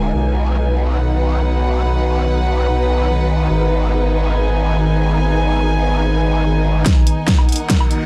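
Chaotic and aggressive, this half-time heavy wobble dubstep fragment is cut from a longer piece and opens on a growling, detuned bass that wobbles through a formant filter, sounding distorted, compressed and bright up front. Behind it, an evolving wavetable pad holds morphing sustained chords with chorus and built-in reverb, while a dark chamber string section adds a bowed, intimate sul tasto texture with light vibrato, both pumping to the sidechain. The bass drops out at 6.8 seconds, and at 6.9 seconds a punchy electronic kick and a tape-warm dubstep kit with a huge snare, bright hats and woodblock burst in for a drum fill. That closing build-up also brings a filter sweep on the pad, and a very quiet riser enters at 7.6 seconds. The production is dark and lightly reverberant.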